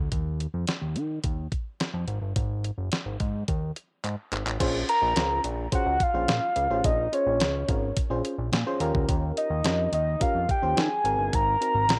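A round, dark synth lead, layered in octaves with a sub octave beneath it, carries the melody from 4.9 seconds, its detuned, chorused tone shimmering with vibrato. This is a slick, funky slice of early-eighties boogie funk in Bb minor, moving at 107 BPM in a straight 4/4. Underneath, a fat analog bass with a sawtooth and square-wave edge and a moving notch filter sweep sits up front alongside a clean 12-bit drum machine, whose sampler-style kit brings a thumpy kick, snare, hi-hat, handclaps and crash. A drum fill leads into the second section at 4.6 seconds, where a mellow FM electric piano enters with decaying chords touched by a noise layer, and it adds a brief fill of its own at 8.2 seconds. The harmony moves from Ebsus2 and Ab5 into lush Bbm9, Eb9 and Ab9 chords, all set in a moderate spring reverb.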